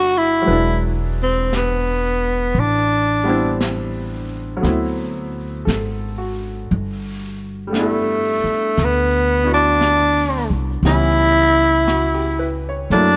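A growling tenor saxophone carries the melody of this late-night, intimate jazz ballad, its breathy subtone and raspy, gritty edge softened by a gentle attack and light vibrato, sitting up front. Beneath it, a clear baby grand piano plays accompaniment with natural, short-sustaining tones, while a pizzicato upright bass with gut strings gives a woody, thumpy foundation close to the listener. A jazz brush drum kit joins at 0.5 seconds, its high-tuned snare and hi-hat kept low in a small-room sound. At a slow 58 BPM in 4/4 with a swung eighth-note feel, the harmony in G major moves from E7 through Am11 and D13 to a settled G69, then turns to C#m7b5 near 10.8 seconds. Light reverb surrounds this 13.2-second cut from a longer piece.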